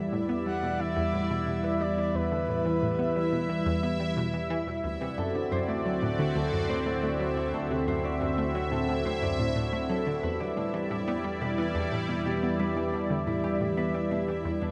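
A sweeping, resonant pad sits up front in this mysterious, hypnotic stretch of ambient, sequencer-driven space music, its detuned sawtooth chords swelling slowly through Em7, D7 and back to Em7 at 89 BPM in E minor, while a nasal, bright analog pluck riff with chorus, phaser and tape echo and a warbling, vintage analog drone anchor the low end. A breathy, flute-like synth lead with vibrato and portamento floats a brief melody from 0.5 to 4.2 seconds, and a ringing concert harp takes up fingerpicked arpeggios from 5.0 seconds. Behind it all, a bubbling stepped-filter texture sits in the background, and the whole excerpt is bathed in a huge, wet reverb with an 8.9-second tail.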